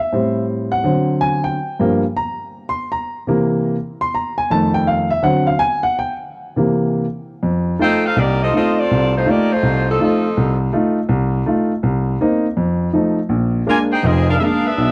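Joyful, brassy swing jazz at 164 BPM, cut from a longer piece, opens with a natural, up-front baby grand piano playing alone through 7.4 seconds over seventh-chord changes such as Am7, D7#11 and Gm7. A tight, mellow saxophone section with light vibrato and a roomy tone then carries the melody in two brief phrases from 7.8 seconds, while the piano keeps accompanying beneath. The sound is a dry, close 1970s-style studio recording touched with light small-room reverb.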